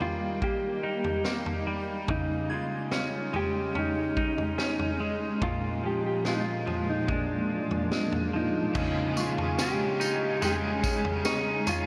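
A dreamy, floating dream pop passage opens with a dark, clean, fingered electric guitar melody trailed by delay, set over a shimmering, ethereal pad of slow-blooming sustained chords, while a bright, compressed semi-hollow guitar picks clean arpeggios up front with subtle chorus and delay. A vintage acoustic drum kit keeps a straight 4/4 at 72 BPM, its punchy kick, high-tuned snare, tambourine, toms and dark crash cymbals sounding mid-forward with a rolled-off top. From 2.5 seconds a soft, pure FM synth bell adds a gentle, warbling texture high in the background, each fast-struck note decaying through chorus and delay. The harmony moves from Eb through Dbsus2 to Bb7, and at 8.7 seconds a bright, overdriven stack guitar joins in the background with tremolo and ensemble chorus as the music settles back on Dbsus2. The whole mix is soaked in a huge, wet reverb with a long 7.6-second tail, tuned slightly sharp to A4 = 441 Hz, and the clip is cut from a longer piece.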